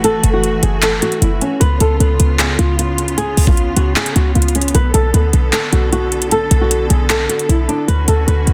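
A boxy, thumb-plucked flamenco guitar carries the melody up front in this dark, hard-hitting trap excerpt, its acoustic tone shaded by a low-pass filter and delay, with finger squeak audible. Behind it, a bright symphonic string section holds lush, bowed chords with biting vibrato and an intense ensemble sound. A short 808-style bass hits punchy and tight, its sine tone carrying a noise layer, a fast attack and a quick decay. The electronic trap kit knocks hard on the kick, with metallic hi-hats and handclaps in a half-time feel. A barely audible downlifter sits under the opening 1.6 seconds, while the harmony moves through F#m7, C#7, Bm7 and Dmaj7. The mix is dry, with a dense, heavily limited modern master.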